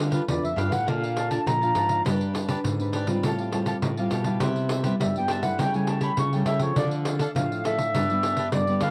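Sunny and festive, this short excerpt of samba and choro moves at 102 BPM in a straight 4/4, with a reedy, mellow accordion carrying the melody up front throughout, its tone dark and smooth with a slow beating quality. Beneath it, a crisp, picked cavaquinho and a fingerpicked classical nylon-string guitar share the accompaniment, both colored by cassette tape and plate reverb, while a second, full-bodied nylon-string guitar plays the bass line in a deep register. A jingly pandeiro sits up front as well, sounding compressed and saturated as it drives the groove from 0.1 seconds onward. The harmony travels from G7 through Bbmaj7, G, Fadd9/A, Cmaj7 and A7/C# to Dm before returning to G. The whole excerpt has the light reverb and homespun character of a home recording on cassette.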